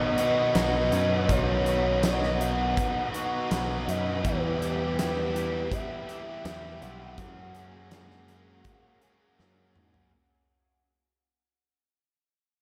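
A straight 4/4 pulse at 82 BPM carries this dreamy, blissful shoegaze and dream pop piece in B major: a huge arena drum kit with a fat snare and punchy kick enters at 0.2 s, joined at 0.6 s by a growling, up-front overdriven picked bass, and a drum fill closes the passage from 9.4 s. Two overdriven guitars play riffs, one biting and dark under lush chorus and the other warm with reverse reverb, while a very quiet, twangy electric guitar through a small old amp picks arpeggios and a full-bodied vintage string machine with cellos holds soft sustained chords. Above them a pure, breathy sine lead glides with vibrato, chorus and analog delay until 9.4 s, all soaked in a lush hall reverb as the music fades out over the Badd9, Em and F#add9 chords.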